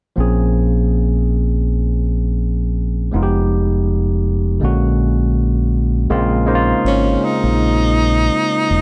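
A light reverb surrounds a close, intimate sound in this short cut from a longer neo-soul and R&B piece, setting an introspective, late-night mood. A barky tine electric piano, bright and clean through a combo amp, sits up front with the accompaniment from 0.2 seconds. A deep dub fingered electric bass, dark, round and amped, holds the low end beside it. The swung sixteenth-note feel carries the harmony from Bbm9 through Fm7b5 and a tense Bb7alt before returning to Bbm9 at 6.1 seconds as a new section begins. At 6.9 seconds a breathy tenor saxophone enters with a jazz-style solo line, its close-miked subtone tinged with vibrato and a slapback echo.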